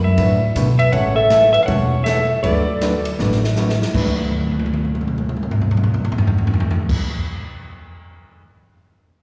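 This swinging, down-home western swing excerpt opens with a clean electric lap steel guitar carrying the melody up front, played with fingerpicks and slide, with volume swells and a slapback echo, over a woody, growly upright bass plucked pizzicato on steel strings. At a lively 159 BPM in 4/4 with a swung eighth-note feel in D major, moving between D6 and A chords, a big-band drum kit and a hollow-body jazz guitar join almost at once. The drums sound airy and polished, with dark cymbals, a punchy kick and a medium-tuned snare, while the guitar plays accompaniment in a clean, fingered, shadowy tone with its own slapback echo. At 0.8 seconds a dusky, smooth-topped clarinet in classical style adds a second line, also treated with slapback echo, and both it and the lap steel fall away at 3.5 seconds. Drum fills then run on until the bass drops out at 6.9 seconds, all heard as a live gig through a venue's PA, with light reverb and a recital-hall air around the players.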